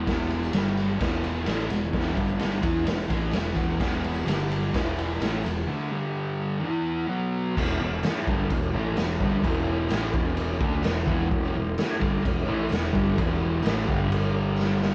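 A straight 4/4 pulse anchors this raw, gritty garage rock clip, cut from a longer piece and captured as a band playing live in one room onto cassette tape with moderate studio reverb. A thick, dark fuzz guitar, double-tracked and up front, drives the riff over E5 and G5 power chords, touching B5 before the second section arrives at 7.5 seconds on an E minor chord that holds until a G5 at 13.9 seconds. Underneath, a modern picked electric bass sits bright, direct and punchy in the low register. The acoustic drum kit sounds saturated and smooth with a rolled-off top, its punchy kick, medium-tuned snare, ride and crash ringing in a stone room, and it closes with a short fill at 14.6 seconds. A very quiet, jingly, compressed tambourine adds a faint shimmer throughout.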